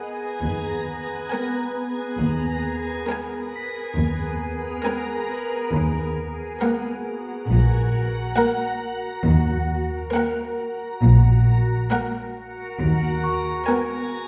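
This tense, uneasy suspense film cue opens on a hushed bed of bowed strings. An intimate, close chamber violin section carries the high melody with light vibrato, a symphonic violin section holds a pure, floating second line in the background, and a dark viola section fills the middle, all three played sul tasto with soft attacks. Alongside them, a reversed, granular texture sustains detuned, dreamy chords with a long release and its own built-in reverb. At 0.4 seconds a rich double bass section and a distant cello section enter on the bass line, also bowed sul tasto. From 3.6 seconds a large celesta adds delicate, bell-like, sweet tones high above, while the harmony moves from Abmadd9/Eb to Ebm and back, and a generous church or concert hall reverberation keeps this short excerpt from a longer piece hanging in suspense.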